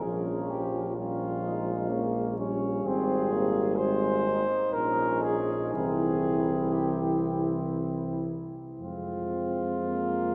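Classical brass band music in a hymn-like style, this elegiac, solemn passage moves in a slow, rubato 3/4 at roughly 52-66 BPM, cut from a longer piece and lasting about 10.3 seconds. A mellow flugelhorn carries the melody up front with a soft attack, set back in a roomy, distant space. The French horn section shapes a second line in the background with light vibrato and a vintage, ensemble character. Underneath, a dark, close-miked euphonium and a soft-edged trombone supply the accompaniment, while a warm tuba holds the bass up front with light vibrato. The harmony passes from Bbm7 through Abmaj9, Bbm and C before settling on Fm, and the whole band sits in a long, wet cathedral reverb that lends the church or concert-hall sound a grave, spacious glow.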